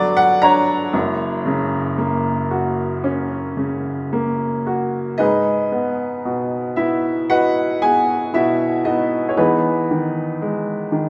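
Classical solo piano, melancholic and wistful, unfolds at a rubato 57 BPM in 4/4 on a clear, woody upright piano sitting up front and ranging from F#1 to A#5, its phrases moving from Gmaj7 and F# into G# minor at 5.2 seconds before settling on Emaj7 at 9.4 seconds, all bathed in a wet church-like reverb in this short cut from a longer piece.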